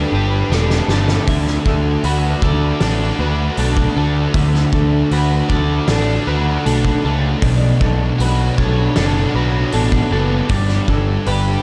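A straight 4/4 pulse at 78 BPM carries this hazy, blissful shoegaze and dream pop fragment in D major, where a bright, twangy twelve-string electric guitar plays clean arpeggios through ensemble chorus and tape echo, a biting overdriven guitar with reverse reverb and a thick, dark fuzz guitar with analog chorus each play a riff, a round, overdriven fuzz bass sits up front, and a loose, distant indie drum kit with a fat snare enters on a fill at 0.5 s, the dreamy mix soaked in a huge ambient reverb as the chords move through Gadd9, Dadd9 and Bmadd9.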